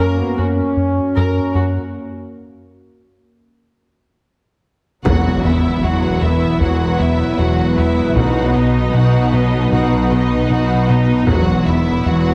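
Opening on a cut-in from a longer cinematic score, a hybrid of orchestra and electronics at 77 BPM in 4/4, the music feels vast and relentless from the start. A round, dark analog bass riff sits beside a lush, smooth cello section holding the low end, while a background viola section provides accompaniment and a warbling, nostalgic tape-like pad, detuned and lo-fi with chorus and its own reverb, holds sustained chords over an F# harmony. A warm, roomy French horn section sounds up front with sustained chords until 1.9 seconds. At 5.0 seconds a distant taiko ensemble struck with hard sticks enters along with a very quiet electronic impact, and the harmony moves through Esus2 and B. From 5.1 seconds an intense symphonic violin section carries the melody with light vibrato and a smooth top, a focused, distant studio violin section plays a second line beneath it, and a double bass section deepens the foundation. 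The whole piece sits in a moderate scoring-stage reverb and has a heavily compressed, radio-like sound.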